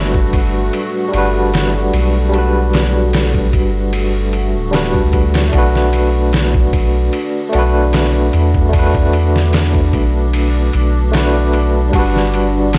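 A straight 4/4 pulse at 75 BPM sets a brooding, melancholic trip hop mood in this 12.8-second cut from a longer piece, tuned to A4 = 438 Hz. The sampler-style drum kit enters at 0.1 s, pitched down and compressed, with a thumpy kick, a medium-tuned snare and ride cymbal sitting up front in a tape-warm studio ambience. Beneath it, a soft dub sub bass gives a deep, round, sustained foundation, also up front. A barky tine electric piano carries the accompaniment, lightly overdriven through a combo amp and coloured by tremolo, tape echo and grainy 12-bit sampler grit. Far behind, a deep, moody ambient pad of detuned sawtooth unison and sine sub octave holds evolving chords with chorus and its own reverb, moving from Gmaj7 to Bm7 at 5.5 s and back to Gmaj7 at 11.9 s. The overall sound is dry and gritty, like a hardware recording, with vinyl crackle running through it.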